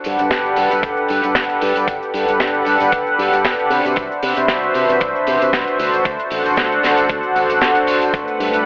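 A sunny, feel-good nu-disco excerpt in G major at 115 BPM with a 16th-note swing opens on a mellow, up-front analog pad with chorus, tape echo and sidechain pumping together with a tight funk kit of hi-hat, high-tuned snare and tambourine. They are joined by a bright envelope-filtered fingered bass, a very quiet cabasa and an overdriven, thumpy electronic kick, moving through Gmaj9, Cmaj9#11 and D7 before a lush, full-bodied string machine with ensemble chorus and 12-bit sampler grit arrives at 8.1 s on the return to Gmaj9, all set in a lush hall reverb with a telephone-like sound.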